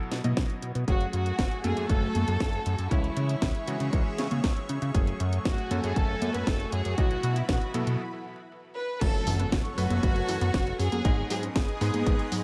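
A clear electric grand piano playing delayed stabs opens this bittersweet, danceable italo disco passage, quickly joined by a house kit with a cracking snare, congas, hi-hat and crash, a glossy, nasal chorused synth bass, and a punchy, up-front electronic kick. A chamber violin section then carries a tender, lightly vibrato melody with vintage sampler grit over a thick sawtooth pad with chorus and phaser. After a short break at 8.0 seconds, a detuned unison pluck arpeggio with cassette-tape character and a very quiet electronic impact arrive at 9.0 seconds, all in a dry mix under a layer of vinyl crackle.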